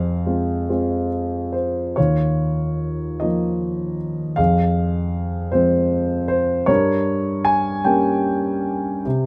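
A dark concert grand piano plays alone, close and up front, its mellow tone resting on a deep bass in this short cut from a longer lyrical classical piece in F minor. The wistful music moves slowly in 6/8 at about 51 dotted-quarter beats per minute, with free rubato and uneven beats, while light reverb surrounds the detailed sound. After an opening on F minor, the harmony shifts to E-flat sus2 at 2.0 seconds, returns to F minor, and settles on G diminished at 6.7 seconds.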